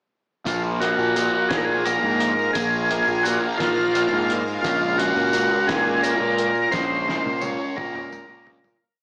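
Soaked in a plate reverb and heard as if through a small speaker, this brief psychedelic rock piece has a dreamy, trippy, hypnotic air in a rolling 6/8 groove. Up front, an overdriven combo organ with a buzzy, vintage tone and light vibrato carries a motif-based melody, trailed by a diffuse ambient delay. Beneath it, a double-tracked fuzz guitar plays short syncopated chords through distortion and phaser, while a punchy, overdriven fingered bass drives a syncopated riff. A lush string machine with a slow attack and ensemble chorus holds sustained chords in the background, alongside a jingly, close tambourine in an evenly spread pattern. The cloth-damped kit sits back in the mix, muffled and gritty with a fat snare and tight kick, and from 6.7 seconds it plays a fill as the piece fades out by 8.8 seconds.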